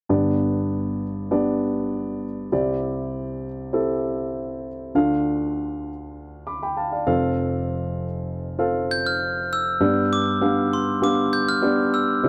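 A dark, mellow grand piano opens this short pop excerpt at 0.1 seconds, sitting up front and carrying the accompaniment across a span from deep bass to high treble at a moderate 99 BPM in a straight 4/4. The mood is hopeful and gently warm, with the harmony moving through G, Cadd9, Dm and F before returning to G as a new section begins at 9.8 seconds. At 8.9 seconds a glockenspiel struck with hard plastic mallets enters with the melody, moving within a compact range from C6 to G6, its metallic, bell-like tone bright and sparkling. Close-miked and dry yet full, the glockenspiel rings out up front, touched by a slapback echo. The whole has the intimate feel of a close 1970s-style studio recording with light reverb and a hint of room ambience, cut from a longer piece and ending at 12.3 seconds.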